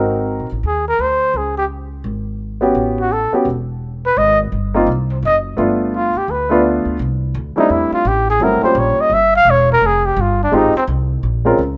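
Jazz at a brisk 170 BPM in swung 4/4, this playful excerpt from a longer piece puts a mellow, breathy trumpet up front on the melody from 0.7 s, with vibrato, soft attacks and scooped notes over colorful chords such as Ab9, A13 and Fm9. A woody pizzicato upright bass anchors the low end for the whole clip. A warm, intimate baby grand piano with audible action noise and short sustain accompanies briefly at the start and returns at 2.6 s, all set in a small room with moderate reverb and a rough home-demo mix.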